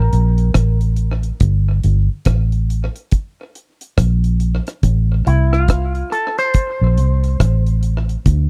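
A foam-muted, round electric bass sits up front and carries this serious, meditative roots reggae fragment, its punchy, amped tone anchoring the low end for the full 8.5 seconds. Beside it, a deep drum kit with a tight kick, hi-hat and rim click plays from 0.1 seconds, its dark, rolled-off top lent a touch of tape echo. The melody comes from a clean, picked electric guitar run through an envelope filter, colored by vibrato and tape echo and set lower in the mix before it drops out at 7.6 seconds. The harmony rests on G minor before moving to A minor at 4.8 seconds, and the 16th notes carry a gentle swing. The sound is dry and close, like a 1970s studio recording with little reverb, and the passage is cut from a longer piece.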